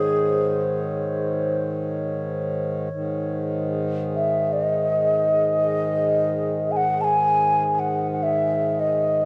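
This home recording on cassette is bathed in a moderate spring reverb that lingers for about 2.4 seconds, giving the sound a tape-coloured intimacy. It is a meditative, haunting piece of world meditation music in free time, cut from a longer work. Up front, a mellow bamboo xiao carries the melody, its end-blown tone airy and straight yet expressive, with tongued notes. A pedal harmonium sits equally forward as a dark, reedy drone with a smooth, breathing quality. Further back, a glass harmonica adds an ethereal, pure texture, its slow attack and beating tones lending a glassy sheen. All three parts sound throughout the full 9.3 seconds, with the opening passage returning at 2.9 seconds.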